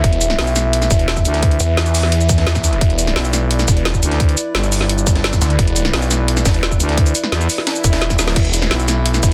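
Mechanical and tense, this short excerpt of dark technical drum and bass runs on a straight four-beat pulse. A snarling, distorted saw bass sits up front and pumps against the kick, and a thick, growling FM bass joins it from 0.4 seconds, so the low end feels layered and aggressive. Above them, a deep, moody analog pad with a nasal edge holds sustained chords, softened by chorus and breathing with sidechain pumping. The drums stack a tight electronic kick with an up-front kit of woody snare, metallic hats, shaker and crash, its snare gently clipped. A very quiet, gritty breakbeat sampler kit with a high-tuned snare adds texture underneath. Near the close, a background swell sounds at 7.8 seconds ahead of a drum fill, and a soft, round pluck arpeggio with chorus and delay enters at 8.4 seconds, all set in light digital ambience within a dense, heavily limited master.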